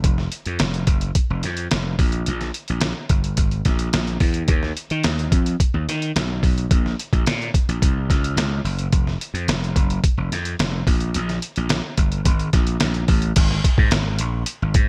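A gritty, overdriven slap bass and a lo-fi, sampler-style drum kit start together in this upbeat, breezy slice of polished 1980s jazz-funk pop, both sitting up front in a dry mix. The bass is bright and growly with a punchy attack. The pitched-down, muffled kit pairs a thumpy kick and medium-tuned snare with hi-hat and crash cymbal, all compressed and tape-warm under gated reverb, and a new section arrives at 13.4 seconds before the excerpt cuts off.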